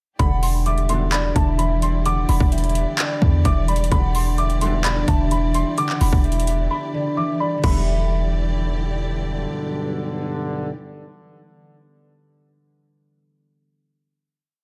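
Set in a small room's reverb, this dark, eerie trap piece at 129 BPM moves in a half-time E minor groove, where an overdriven trap kit with a hard-clipped kick, metallic hats and fast hi-hat rolls sits up front beside a punchy 808 bass holding long sub notes that follow the kick, while a boxy grand piano loops its melody through digital delay, a hollow, woody clarinet-like synth lead adds a sparse, chorused counter-melody, a fingerpicked harp rings out a rising eighth-note arpeggio, lush bowed strings sustain an Em7 pad with vibrato and portamento, and a mellow brass section fires short delayed stabs, all leading to a break at 6.7 s and a final chord from 7.6 s that the harp carries until 11.5 s.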